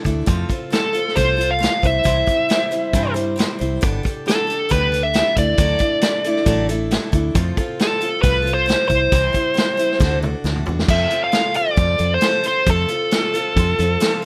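Jangly and warm, this folk rock and heartland rock passage moves at 135 BPM in a straight 4/4 and is cut from a longer piece. A bright, freshly strung steel-string acoustic guitar is picked as accompaniment, with a touch of finger squeak. Beneath it, a fingered electric bass with a foam-muted tone, heard both direct and amped, holds the low end. A vintage acoustic drum kit sits up front with dark cymbals, a medium-tuned snare and a tight kick, its top rolled off, and it plays a fill at 10.0 seconds. From 0.7 seconds a smooth, overdriven lead guitar carries the melody as the loudest part, over harmony that cycles through F, C, Gadd9 and Dadd9 before turning to D and opening a new section on F at 10.9 seconds. Light reverb and a small room ambience give the whole passage the rough feel of a home demo.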